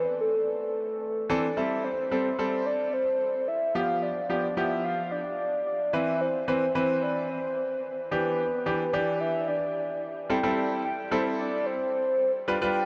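A dreamy, tape-tinged mix sits in a huge ambient reverb with a long, lingering tail, so this short pop excerpt feels soaked in space. It is bittersweet yet driving, moving at 110 BPM in a straight 4/4 in A minor. A soft, octave-layered synth lead carries the melody from the first moment, its round, detuned tone thickened by a sub octave, a gentle attack, vibrato, and chorus, phaser and analog delay. At 1.3 seconds a brilliant, polished grand piano joins underneath as accompaniment, its notes clipped short yet sitting up front alongside the lead. The harmony drifts from Am through Am7, G7, Cmaj7 and Em7 before settling back on Am7 at 10.3 seconds, holding there until the excerpt breaks off at 12.9 seconds, cut from the longer piece.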